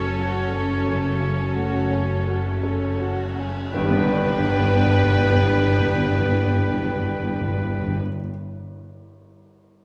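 A hopeful, moving cinematic film score in a rubato feel, where a lush, vibrato-rich violin section carries the melody over a second violin line, a clear oboe, a dark clarinet and a pure silver flute, with a muted, intimate upright piano and an intense viola section in the background. Distant, roomy French horns sustain chords, a ringing, thumb-plucked harp plays arpeggios, and focused double basses join close, smooth cellos to anchor the bass as the opening slows over F#m. At 3.7 seconds the band lands an accent on G as calf-headed timpani and a very quiet tam-tam enter, under a wet scoring-stage reverb.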